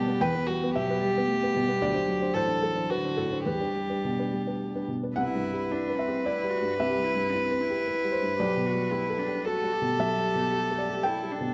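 In a rubato three-four lilt, this longing, melancholic neoclassical piece sets a pure, floating sul tasto violin melody up front over a bowed cello second line with light vibrato and a soft, intimate felt-muted upright piano with short sustain, each sounding from start to finish as the harmony moves from Emadd9 through D7 to Cmaj7 at 5.2 seconds and on to Gadd9/B, all within a moderate concert hall reverb.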